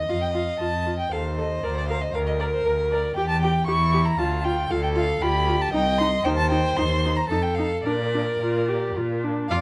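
A rich, focused cello sits up front beneath a graceful, spirited classical-period string quartet movement in Bb major and 3/4 at 108-119 BPM with a rubato feel, where a smooth, even first violin carries the melody, a dark second violin adds an expressive second line with vibrato and portamento, and a warm viola fills the accompaniment, all set in light reverb as the harmony moves from F7 through Em6, Dm and Cm to settle on Bb at 7.8 seconds in this brief passage cut from a longer piece.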